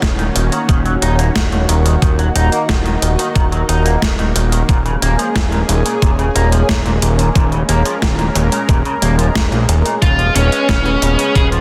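A straight, steady beat of thumpy, tape-tinged electronic kick and a clean 12-bit drum machine's hi-hat and snare, re-recorded in a large room, drives this moody, nocturnal synthwave excerpt, where a fat, saturated sawtooth bass pumps up front beneath a lush, detuned unison pad with chorus and phaser, a twangy, slightly broken-up electric guitar picks a riff through tape echo, and a dark, high-gain lead guitar with distortion and digital delay cuts in at 10.0 s for a brief phrase before the fragment ends at 11.6 s.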